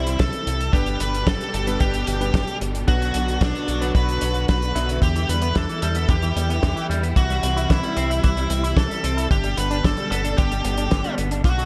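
An up-front, overdriven lead guitar carries a bittersweet melody through digital delay in this danceable italo disco excerpt at 112 BPM, over a round, deep analog bass with tube saturation, a dry, tight kick, a damped 70s kit with fat snare, hi-hat and gated reverb, and lush bowed strings holding chords from C through G, Bm and Em7, while a clangy, chorused electric grand piano stabs through tape echo until 5.0 seconds, when a twangy envelope-filtered guitar takes over with picked arpeggios.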